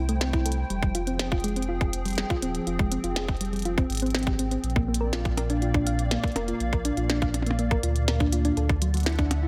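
A tine-like, thumb-piano-style synth pluck spins dark, round arpeggios through chorus and tape echo over a hollow, flute-like pad with ensemble chorus, a deep sine sub bass, a tight, tape-warm electronic kick up front and a glitchy kit of tiny snare, clicky hats and percussion blips, giving this eerie 122 BPM IDM excerpt in 4/4 a light digital ambience as the chords move from Am7 through Fmadd9 and Bb to Dadd9.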